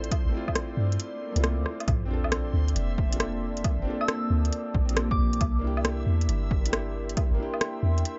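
A deep, round 808-style bass sits up front in this wistful, ghostly future garage excerpt at 136 BPM in 4/4, its sine tone striking fast and decaying under a 16th-note swing. A punchy, layered electronic kick with overdrive joins it, while an organic electronic drum kit adds crisp hi-hats, rim clicks and woodblock. Around them, a felt-muted upright piano plays soft, intimate accompaniment roughened by vintage 12-bit sampler grit and tape echo, and a moody detuned pad holds slow-attack chords through chorus and reverb, both breathing with sidechain pumping over Dm7, Bbmaj9 and C7. The kick drops out from 1.0 to 1.9 seconds while a very quiet swell and sub drop lands its impact at 1.9 seconds, and a reversed, granular texture drifts dreamily in the background. At 4.0 seconds a pure, gentle FM bell offers a brief melody trailed by dub echo, all within a dark, close production.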